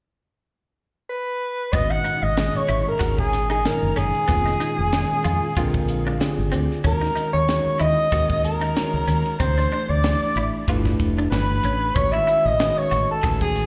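A swung sixteenth-note groove in 4/4 drives this funky electric jazz fusion excerpt, cut from a longer piece. A breathy soprano saxophone carries the melody from 1.1 s, subtoned with vibrato, up front yet roomy, with a slapback echo trailing it. At 1.7 s the band arrives: a crisp drum kit with punchy kick, high-tuned snare, hi-hat, ride and dark cymbals; a woody, round fretless bass; and a bell-like tine electric piano accompanying cleanly, with a fill around 4.9 s. Higher up, a silver concert flute plays an airy second line with a soft attack in the background. A semi-hollow guitar adds compressed, picked stabs colored by ensemble chorus, slapback echo and analog delay. The music comes through a club PA with reverb and a dulled top end, giving it the feel of a live gig.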